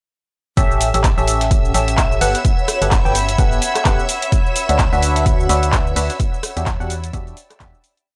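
Energetic and soulful, this short piano house piece in E dorian runs at 128 BPM in 4/4 with a 58% swing on the sixteenths, moving through A7, Gmaj9, D69 and Em9 before fading out from 5.6 seconds. From 0.6 seconds a punchy electronic kick drives a four-on-the-floor pulse up front, joined by a house kit of bright programmed hats, clap, rim click and shaker, while a very quiet, gritty, tape-warm sampler-style kit adds a looped breakbeat with edits underneath. A biting, barking FM electric piano carries the rhythmic chord riff in drop-2 voicings, treated with chorus, phaser and tape echo, and a hollow, organ-like FM bass follows the chord rhythm down low, both pumping against the kick. Above them, a shimmering, warbling vintage string machine holds high violin chords through an ensemble chorus, and from 1.7 seconds a cloudy granular pad drifts in with blurred, slowly shifting chords bathed in its own reverb. 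The whole track sits in a digital ambience with a dry, gritty hardware character and transformer saturation.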